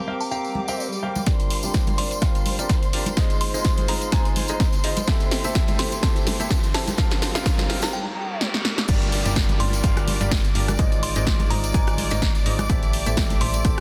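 A dense, heavily limited mix with light reverb carries this soulful, energetic piano house cut at 126 BPM with a swung 16th-note feel, where a bright baby grand riff with audible action noise and a distant, woody violin section both pump against the sidechain over Gm7, Ab6 and Am7 chords, a glassy, warbling synth bell melody with chorus and tape echo sits in the background, and tambourine and congas add soft-handed acoustic color. Very quiet swells, risers, a reverse cymbal and a downlifter drift through the cut. A layered, overdriven electronic kick and an analog drum machine with punchy snare, hi-hat, rim click and crash enter at 1.3 seconds to drive a build-up marked by filter sweeps on the piano and bell, until the drop at 8.9 seconds brings in a round, dark FM bass.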